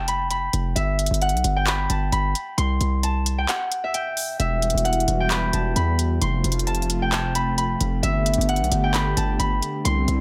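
Set in a digital ambience, this melancholic, brooding trap excerpt moves at 132 BPM in a half-time 4/4 feel. An acoustic Celtic harp carries the melody up front between E5 and C6, its fingerpicked, ringing tone softened by a low-pass filter and trailed by delay. Beneath it, a hard-hitting 808-style bass lands punchy and heavy between E1 and E2, a saturated sine with a noise layer, a fast attack and a decaying tail. The trap drum kit sits up front with crisp hi-hats and handclaps and a tape-warm, produced character. After a break from 3.5 to 4.4 seconds, a warm analog pad enters with detuned sawtooth and triangle tones, soft attack, long release and a warbling, lush chorus, sustaining mellow vintage chords. The harmony moves from F5, G and C5 into Emadd9, F and Gadd9.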